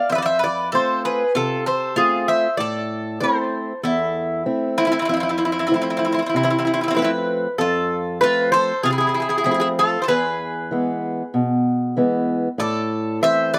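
A Greek bouzouki leads this moody, bittersweet Greek folk fragment, its metallic double strings, some doubled at the octave, carrying the picked melody up front at a straight 96 BPM in 4/4. Beneath it, a mandolin plays a second line on its own paired strings with a round tone, sitting lower in the mix. A fingerpicked steel-string parlour guitar joins at 0.1 seconds with a dark, boxy accompaniment that stays close to the listener, with finger squeak audible along the way. The harmony moves between F and A minor, and a new section begins at 7.6 seconds, reaching an E chord at 10.1 seconds before settling back on A minor. All three instruments carry a slapback echo, and the dry, open-air recording gives the small band an intimate, unadorned character.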